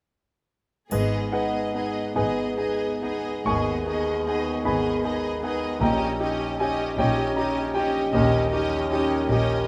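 Passionate and tragic, this brief cut from a Romantic movement for piano and orchestra unfolds in G# minor at a slow, rubato 12/8, with an up-front concert grand carrying the melody over a focused violin line, lush second violins, smooth violas, mellow French horn chords and a rich bowed bass of cellos and double basses, while a faint triangle sounds only from 0.9 to 2.5 seconds and the harmony moves from G#m to D#7/A# at 5.8 seconds.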